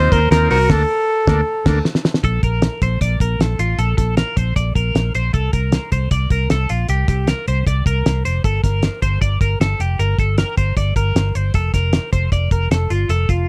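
A straight 4/4 pulse from a cloth-damped, thuddy drum kit with a fat snare and dark cymbals drives this youthful, nostalgic jangly indie pop excerpt, where a punchy, close-miked trumpet melody with tape echo and a buzzy combo organ open the excerpt, a band accent lands at 0.7 seconds, a drum fill arrives at 1.5 seconds, and the trumpet drops out at 1.9 seconds, leaving a bright, twangy twelve-string electric guitar playing echoing arpeggios over a round, foam-muted fingered bass in a dry, close 1970s-style sound.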